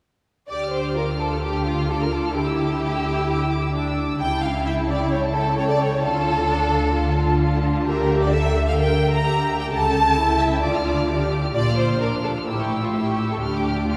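A quick classical-period movement for string orchestra in D minor at 130 BPM, this excerpt from a longer piece feels urgent and restless, all five sections entering together at 0.5 seconds and playing through to 14.0 seconds. A violin section carries the melody high in its range, from E5 up to F6, with a focused, smooth-topped tone and vibrato, while a second violin section beneath it sits up front with a rich, expressive, lush sound on the second line. Violas fill in the accompaniment between D4 and Bb4, and the bass is shared by a lush cello section and a double bass section whose soft attack, portamento and close presence give the low end a rounded, singing quality. The harmony moves from D minor through a suspended chord, A7 over C sharp and a half-diminished E chord before quickening toward a cadence through Bb and A back to D minor. The whole ensemble is heard from further back in a church with a long, wet reverb that lends the urgent writing a spacious, resonant halo.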